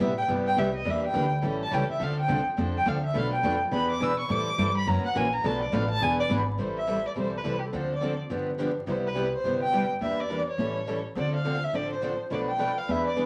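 Violin, two picked steel-string acoustic guitars and upright bass open together at once in this virtuosic, swinging gypsy-jazz excerpt in minor, with the bowed violin up front playing a focused, smooth-topped solo with vibrato through the first 6.6 seconds before carrying the melody on into the second section. Beneath it, one guitar rings bright and the other sits mellow and parlour-sized, both with fresh strings, while the pizzicato bass adds a woody, dark foundation as jazzy seventh chords and half-diminished turns move by quickly. A wet studio reverb and a layer of vinyl crackle give the short clip an old-record glow.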